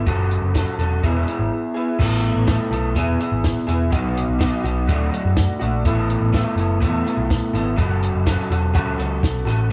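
A straight 4/4 pulse drives this jangly, wistful indie rock excerpt, cut from a longer piece. Up front, an electric guitar through a small old amp plays the riff with a slightly broken-up, lo-fi tone touched by analog chorus, while a picked electric bass sits underneath, dark, round and punchy. A compact cocktail drum kit keeps time with a dry, natural sound, pairing a high-tuned snare and punchy kick with dark cymbals across hi-hat and crash. After a brief break from 1.5 to 2.0 seconds, the music moves into a new section at 2.0 seconds that cycles through Asus2, E, B and D before returning to F#m at 7.8 seconds. A studio reverb lends the whole a shared sense of space.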